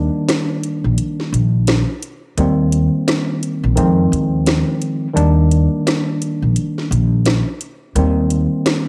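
Boom-bap hip-hop at 86 BPM with a swung 16th-note feel and a gritty, moody cast, cut from a longer piece and recorded at home on cassette with little reverb. A worn, slightly out-of-tune tine electric piano carries the accompaniment through Ebmaj7, Cm7/Eb and Fm7 with cassette-tape coloring and filtering, while a woody pizzicato upright bass on steel strings sits up front from the start until 8.4 seconds. An electronic, layered house drum kit enters at 0.3 seconds, its cracking snare, rim click and metallic hi-hats overdriven and tape-saturated.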